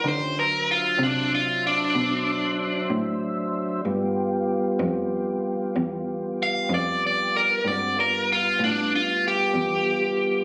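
A straight 12/8 lilt at 63 BPM drives this swaggering, rollicking slow blues in G mixolydian, cut from a longer piece, where a biting, overdriven electric guitar picks an up-front solo over a mellow, round tonewheel organ holding sustained chords through a slow rotary speaker, light overdrive and chorus vibrato, while a single bowed cello supplies a soft, floating sul tasto bass line, the harmony moving from D9 to G9 at 3.9 seconds, all heard through light reverb in a phone-recorded room sound with a dulled top end.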